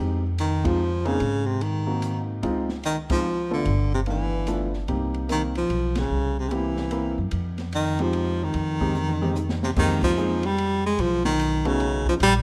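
A clear, close-miked baritone saxophone with vibrato carries the melody up front in this late-night, smoky excerpt of small-group swing and bop in F minor at 147 BPM in a swung 3/4, over an intimate concert grand piano with audible action noise, a woody, growly pizzicato upright bass, and an open jazz drum kit with dark cymbals, a high-tuned snare and a boomy kick, with band accents at 0.6 and 5.9 seconds and a drum fill from 9.0 to 9.8 seconds leading into a closing passage on Fm11 and B9, all set in light reverb.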